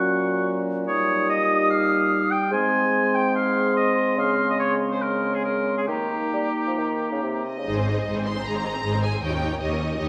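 Cheerful and spirited, this fast romantic orchestral passage in Ab major moves at 128-157 BPM in 4/4 with a rubato feel, opening on woodwinds and horns: a clear, up-front oboe and a hollow flute carry second lines over a dark clarinet in the background, a mellow bassoon accompaniment and sustained chords from a dark French horn section. At 7.5 seconds a distant violin section enters singing the melody, joined at 7.7 seconds by a second violin line with a soft attack, a close, focused viola accompaniment, and a bowed bass of cellos and a rich double bass section, all with vibrato. A wet scoring-stage reverb gives the ensemble a spacious sheen in this cut from a longer piece.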